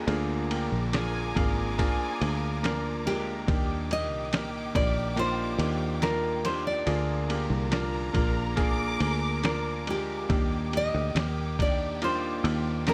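This hopeful, heartfelt pop ballad excerpt moves at an unhurried pace in a straight four-time feel, alternating between Bb7 and Ebmaj7 chords. A bright, full-bodied nylon-string guitar carries the melody with audible finger squeak and a touch of delay, while a clear grand piano sits up front in accompaniment, its intimate sound revealing the natural noise of the action. A round, punchy fingered electric bass with a dark, foam-muted tone anchors the low end, and a lo-fi sampler-style drum kit adds a thumpy kick, a medium-tuned snare and ride cymbal, all compressed, pitched down and muffled with a tape-like character. Beneath them, a lush, distant string section holds sustained chords with expressive vibrato and portamento, and a very quiet fingerpicked steel-string acoustic guitar plays jumbo-bodied arpeggios. A smooth, even violin section adds a second line from 0.9 to 9.6 seconds with delay, and a faint electronic downlifter sounds through the opening until 3.5 seconds, all set in light reverb with a small-room ambience.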